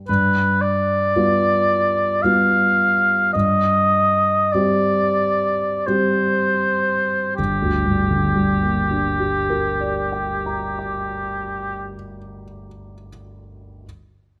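Moving in a slow, rubato triple metre that slows down through its first 7.4 seconds, this short passage cut from a longer romantic classical piece for oboe and grand piano feels melancholic and solemn. A mellow oboe carries the melody from 0.1 seconds, singing with a light vibrato in a classical style and sitting up front, even as it sounds somewhat distant and roomy. Beneath it, a dark grand piano provides the accompaniment across a deep range, its intimate, smooth and vintage character colored by audible action noise. The harmony moves from G7 to Cm over G before settling on Gm as a second section begins at 7.4 seconds, and the oboe falls away at 11.9 seconds while the piano carries on to 13.9 seconds. Close, detailed microphones capture the duo within a moderate recital hall reverb.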